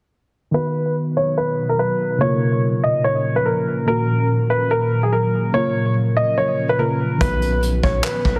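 Heavily compressed, radio-like sound with light small-room reverb frames this menacing, hard-hitting hip hop and trap piece at 144 BPM in a half-time feel, where a dark, mellow baby grand piano carries the melody over muted, felt-like synth keys. An ethereal, airy pad with phaser enters at 1.3 seconds while a filter sweep runs through the opening, and at 7.2 seconds a heavy, punchy 808-style bass and a distant, roomy brush drum kit with handclaps, hi-hat and a punchy kick arrive, as the chords move from B through Bbm and Ebm back to B.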